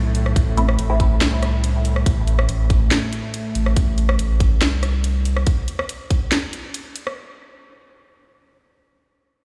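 Cavernous and brooding, this short cut from a deep dubstep drop moves at 141 BPM in a half-time 4/4 feel in A minor, heard as if through a big sound system in a bare stone room. A tense, string-like sawtooth drone with vibrato and built-in reverb holds sustained chords until 3.8 s, while a thick, saturated sub bass sits up front beside a tight electronic kick and an overdriven garage kit of hi-hat, rim click and cracking snare. Briefly at 0.6 s, a muted, mellow filtered dub chord stab passes through phaser, ensemble chorus and dub echo.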